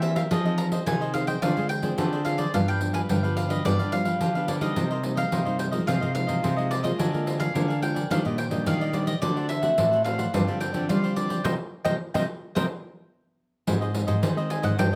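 Samba and choro with a bittersweet, nostalgic mood: a mellow, round mandolin carries the melody up front, over crisp picked cavaquinho, a full-bodied fingerpicked nylon-string guitar and a second nylon-string guitar playing the bass line in the background, all driven by a jingly pandeiro. The minor-key harmony moves through chords such as Fm7, Dm7b5, G7 and Ebmaj7, and the band hits an accent at 11.4 seconds before the mandolin takes a solo at 13.7 seconds over an Ab chord. Close, detailed microphones and light reverb keep the acoustic sound intimate, in this clip cut from a longer piece.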